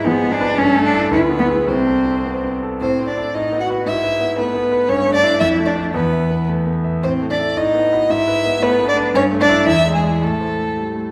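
Heard through a wet recital hall reverb, this urgent, dramatic classical-period movement for piano trio, cut from a longer piece and played with rubato in 2/4, sets a dark, woody violin melody with vibrato up front over an intimate sul tasto cello second line with soft attack and light vibrato, while a clear concert grand piano accompaniment sounds present and polished, with deep bass, long sustain and audible action noise.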